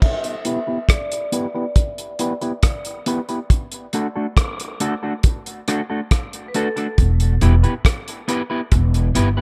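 Dub reggae in E minor at 69 BPM, deep and hypnotic, this short excerpt opens on a break where a bright, ringing vibraphone with slow motor vibrato sits in the background through low-pass filter and dub echo, a cloth-damped, thuddy drum kit with dark cymbals and a tight kick plays up front, and a slightly broken-up, fingered electric guitar joins at 0.5 seconds with its own filter and echo, before a woody pizzicato upright bass arrives at 7.0 seconds as the chords move from Em to D and back to Em under a filter sweep and light reverb.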